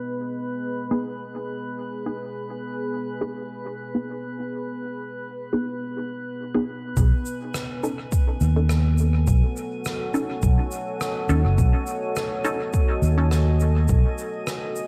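Spacious and hazy, this ambient dub excerpt moves at 104 BPM in 4/4 with a light swing on the sixteenths, centred in B mixolydian. A deep, moody pad of detuned sawtooth and sine layers with a sub octave and a moving notch holds sustained chords throughout, its slow attack and long release softened by chorus and reverb, while a glassy texture of drifting overtones floats calmly above it. From 0.9 seconds a muted, full-bodied chord stab with a filter pluck, fast attack and short decay passes through phaser, cassette tape colour and dub echo. At 7.0 seconds the harmony shifts from G#m/B to B9 as an overdriven, layered electronic kick sits up front beside a round, amped fingered electric bass, joined by a shaker and rim click with a big-room acoustic character, filtered and sent into dub echo. The whole mix has a dark, low-passed production in a small room with light reverb.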